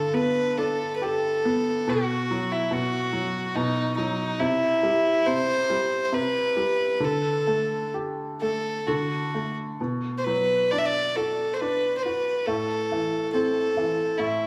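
In a rubato 3/4 at 64-73 BPM, this pastoral, nostalgic Celtic slow air excerpt sets a close, earthy solo fiddle with light vibrato and a biting, airy bow over a bright, woody upright piano whose audible action noise and short sustain keep the accompaniment intimate, both up front within a moderate concert hall reverb.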